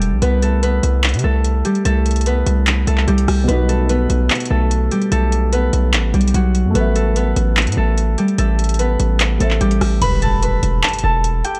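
A half-time 4/4 groove at 147 BPM drives this dark, eerie trap piece in E harmonic minor, where a booming analog drum machine with metallic hi-hats, handclaps, rim clicks and crash sits beneath a punchy, heavy 808-style bass up front, a ringing, fingerpicked concert harp carries the low-pass-filtered melody, a mellow, vintage-toned concert grand piano joins in the background from 3.4 s, and at 10.0 s a downlifter and impact mark the shift as a soft, pure FM synth bell with chorus, phaser and tape echo adds a brief second line.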